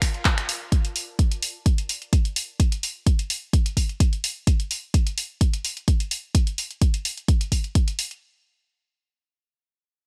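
A bright, dry, 1980s-style digital sound frames this bittersweet, soulful piano house fragment, cut from a longer piece. A veiled, muted chamber violin section holds a soft Bbmaj7 chord in the background alongside a cloudy, evolving granular pad, both pumping against the beat before dropping out at 0.7 s. The up-front drums, present from the start, then carry the groove on their own: a layered, punchy electronic kick runs to 7.9 s, while an analog drum machine, re-recorded in a small room and treated with gated reverb, adds finger snaps, handclaps and hi-hat until 8.2 s.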